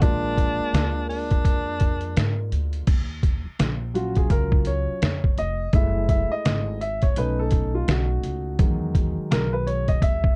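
Mellow, smoky jazz-hop in Eb minor at 84 BPM with a swung 16th feel, where a distant, warm subtone tenor saxophone and a ringing, metallic vibraphone with soft mallets and slow motor vibrato in the background open the excerpt over a smooth, vintage baby grand piano with long sustain, a woody, growly pizzicato upright bass and up-front, gritty sampler-style drums with a thumpy kick and vintage 12-bit crunch, until the sax and vibes stop at 2.5 seconds and the piano takes a solo from 2.9 seconds through 10.4 seconds over Ebm7, Gbm9, B9 and Emaj7 chords in a dark, dry, warm mix.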